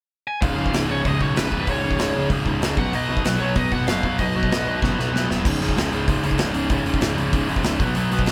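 A bright, picked lead guitar melody opens this short, upbeat punk rock clip at 191 BPM and runs until 4.8 seconds, with a double-tracked, up-front overdriven rhythm guitar entering a moment later to drive the band. Beneath them, a growly fuzz bass sits in the background while a punchy, acoustic rock drum kit with crash, hi-hat and a medium-tuned snare plays a fill from 4.8 to 5.4 seconds, leading into the second section. The energetic band sounds like it is playing live in one room with light reverb.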